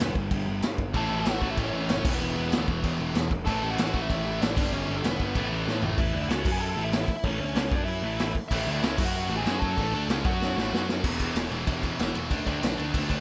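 A raw, up-front garage drum kit with a punchy kick and gritty, saturated small-room sound drives this rebellious punk rock excerpt at 190 BPM in A major. From the start it is joined by a sludgy distorted guitar riff, a growly fuzz picked bass and a biting overdriven lead guitar with delay, which carries the melody until 10.8 seconds. A bright distorted second guitar plays a riff from 0.9 seconds with a gap before 8.5 seconds, and drum fills mark the turns into new sections over fast chord changes on A, G, E, F# and D.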